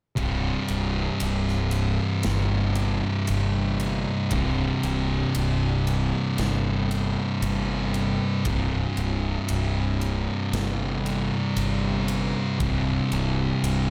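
A thick, dark fuzz guitar sits up front, grinding out a distorted, picked riff between C2 and C3 from 0.2 to 13.9 seconds in this ominous, heavy stretch of stoner and doom metal. A second fuzz guitar plays a riff in the same register from further back, thickening the wall of sound. Beneath them, a fingered electric bass runs direct and through an amp, overdriven and growly, pushing punchy low notes between C1 and G1. An acoustic rock kit played in a big room adds a punchy kick, a medium-tuned snare and bright ride cymbal strokes at a crawling 58 BPM in straight 4/4. Built on a C5 chord and cut from a longer piece, the mix stays dry with little reverb, which keeps the slow, crushing weight close and immediate.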